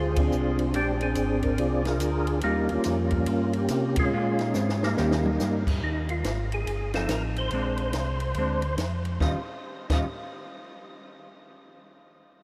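A vast, echoing reverb surrounds this short, bluesy soul jazz organ trio excerpt, which swings in 4/4 with a light swing feel on the eighth notes. A percussive tonewheel organ carries the melody up front, its round, clean tone colored by third-harmonic percussion, chorus vibrato and a slow rotary speaker. A second, mellow tonewheel organ voice holds down the bass line from the start with the same vibrato and slow rotary, while a compact cocktail kit enters at 0.2 seconds with dark cymbals, a high-tuned snare and a punchy kick. A dark, picked hollow-body electric guitar joins at 0.7 seconds to comp quietly beneath the organ. The band hits accents together at the opening and at 3.9 seconds, and a drum fill at 4.6 seconds leads into a new section as the harmony moves through ninth, seventh and sixth chords before settling on Eb9 near the close.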